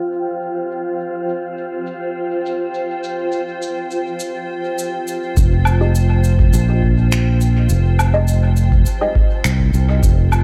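Ambient dub in F minor at 103 BPM, spacious and hazy, cut from a longer piece: a blurred, granular cloud pad holds sustained chords moving from Fsus2 to Fm9 alongside an airy, wind-like tuned noise texture in the background until 5.4 s while a filter sweep runs across the pad, and cabasa, woodblock and finger snaps with a big-room sound and dub echo run throughout. At 5.4 s a deep analog electronic kick and an up-front, direct-and-amped fingered electric bass enter, and from 5.8 s a dark, muted chord stab with a filter pluck, phaser, analog chorus and dub echo adds short, sub-octave accents. The whole sits in a small room ambience with a low-pass filter.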